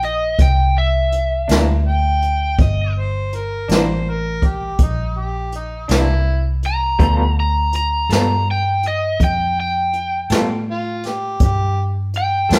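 A crunchy, overdriven lead guitar opens this gritty, laid-back slow blues in 12/8, over a dark, round, foam-muted fingered bass and a brushed jazz drum kit with a boomy kick, all three sitting up front. At 1.5 s a second electric guitar through a small old amp joins with slightly broken-up, lo-fi accompaniment and tremolo, and at 1.9 s a mellow harmonica enters with light vibrato and scooped notes. The band plays live together in one large studio room with moderate reverb as the harmony moves from C9 to G9 in this clip cut from a longer piece.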